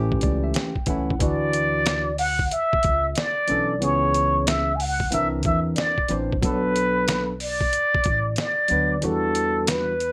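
Relaxed and cool, this jazz-hop excerpt sits at 92 BPM in D major with a swung sixteenth-note feel. A barky tine electric piano, clean and played through a combo amp, opens with a short fill before settling into chords that move from Dmaj9 through C#m7, C9 and Bm7 to Em9. Underneath, a pizzicato upright bass with steel strings gives a woody, dark low end, while a sampler-style trip hop kit, compressed, pitched down and gritty, sits up front with a thumpy kick, medium-tuned snare and hi-hat carrying a tape-warm tone. At 1.2 seconds a trumpet with plunger mute takes the solo melody, breathy and whispered, with wah-wah colour, vibrato, soft attacks and scooped notes. Though up front, it has a distant, roomy, intimate character, and a light reverb gives the whole mix a gentle sense of space.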